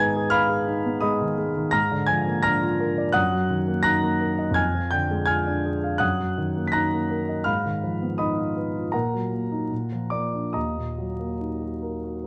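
Passionate and stormy, this romantic character piece for solo piano unfolds in Eb minor at a flexible 69-88 BPM in 4/4, its rubato pulling the time freely. A warm concert grand carries the whole 12.3-second fragment, ranging from Eb2 up to Cb7, with a deep bass and long sustain that let each chord ring. The harmony moves from Abm through Bb7/Ab and a darkened Ddim/F before settling through Ebm/Bb and Bb onto Ebm at 10.5 seconds. Close, detailed microphones place the piano up front, while light reverb adds a touch of space. A vinyl crackle lends the sound an aged patina, and the passage is clearly cut from a longer work.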